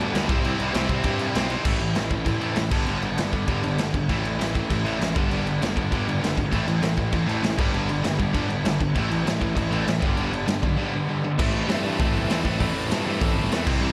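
A gritty, boomy garage drum kit pushes up front from the first second of this aggressive, urgent punk rock excerpt at 197 BPM, its pumping small-room sound driving a growly fuzz bass and two bright, tight distorted guitar riffs, one double-tracked. A sludgy overdriven guitar drops out at 1.7 seconds and rejoins at 6.5 seconds, all in a dry mix that moves from C to a churning Am-G alternation.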